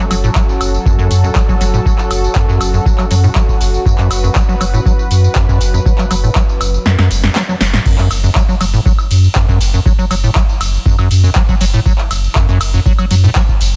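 The recording sounds dense and heavily limited, with little reverb, and this cut from a longer acid house piece moves at 120 BPM in a straight 4/4 in F# minor, its mood hypnotic and gritty. A squelchy, resonant square-wave acid bass riff with fast plucked decays carries the track, thickened by tube saturation, analog chorus, digital delay and sidechain pumping, while a round, sine-based sub bass sits beneath it, saturated and pumping as well. A deep, tape-toned electronic kick anchors the groove alongside an analog drum machine playing a punchy snare, handclaps, metallic hi-hats, ride, crash, tambourine and woodblock; its snare, claps and hats carry a short room sound, and the whole kit was re-recorded in a large room. A smooth, detuned sawtooth pad holds sustained F#m chords with a soft attack, chorus, tremolo and pumping, lending the opening a bright, warm glow. At 6.9 seconds the kick drops out for a drum fill, and at 7.9 seconds the drop arrives, the pad having fallen away so the basses and drums drive on with the harmony stripped bare.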